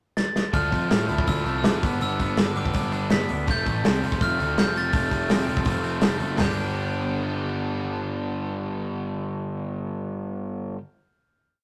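A rough rehearsal-room recording with tube saturation and a moderate reverb carries this short, wistful indie rock piece at 165 BPM in G mixolydian, opening on a drum fill at 0.2 seconds before a jangly pre-chorus moves through Dmadd9, G and F. A loose, punchy kit drives a big rock groove up front until 6.5 seconds, while a dark, round fuzz bass pushes driving eighth notes and two bright overdriven guitars share the riff: one biting with ringing chords, the other crunchy with picked arpeggios set in the background. Over it all, a bell-like glockenspiel struck with brass mallets spins a smooth, motif-based melody in period phrases that rings on into the final G chord.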